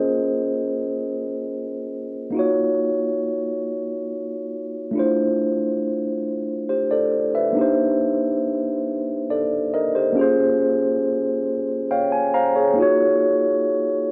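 A mellow tine electric piano plays alone, clean and up front through its built-in speakers, in this sultry, late-night R&B excerpt at 46 BPM in a straight 6/8, moving through Bbm9, Ebm9, Dm9 and Cm9 chords from A3 to Bb5 in a moderately reverberant room, with a fill at 11.5 seconds as the second section unfolds.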